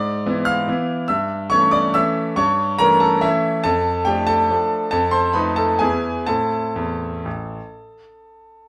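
A brilliant, up-front grand piano plays alone through this elegant, bittersweet classical waltz fragment in a flexible rubato 3/4, spanning A1 to F6 and tuned to A4 = 444 Hz, its chords moving from E7/G# through A7/G, Dm/F and F7 to E and finally Am at 6.3 seconds, all set in a moderate large-studio reverb.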